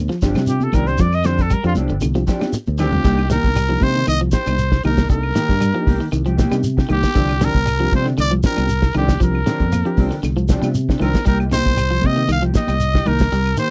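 Twangy, slightly broken-up guitar arpeggios and a fingered electric bass open this defiant, funky afrobeat excerpt from a dry, close 1970s-style studio, joined almost at once by a dark, small-room soul drum kit, quiet high-tuned congas, grainy shekere, faint woody claves, a reedy, worn electric piano with overdrive and fast tremolo, and clean chorused guitar stabs, while a clear trumpet sings briefly from 0.5 seconds, a drum fill arrives at 2.4 seconds, and a raspy, growling trumpet takes the lead up front from 2.8 seconds.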